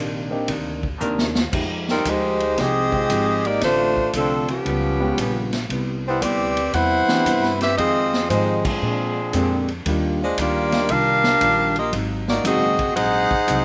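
Big band swing at 116 BPM in 4/4, this sultry, swinging passage is cut from a longer piece and moves through rich jazz harmony, opening on Cm9 and passing through chords such as Db7#11 and Ebmaj9. A dark, clean hollow-body archtop guitar and a woody, pizzicato upright bass with steel strings play from the very start, joined at 0.3 s by a clear concert grand piano with deep bass and long sustain sitting in the background. The drum kit enters at 0.5 s, heard distant and roomy with dark cymbals, a medium-tuned snare and a punchy kick, and it plays a fill from 1.0 to 1.5 s while a bright, nasal muted trombone section sounds a brief sustained chord. From 1.9 s the saxophone section carries the melody up front, its tone warm with vibrato and a touch of slapback echo, and the whole band hits an accent at 8.6 s. The recording has little reverb.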